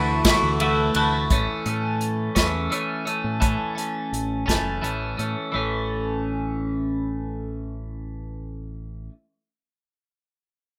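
Jangly and wistful, this indie rock excerpt moves in a straight 6/8, opening on a Dadd9 chord before settling on A. A bright, clean, compressed twelve-string electric guitar carries the riff up front through a phaser, while a growling fingered electric bass, overdriven and warm, holds the low end beneath it. An acoustic drum kit played with bundle sticks in a small room, with punchy kick, medium-tuned snare, hi-hat and ride cymbal, sits up front from 0.2 to 5.4 seconds, and the rough home demo mix carries light reverb.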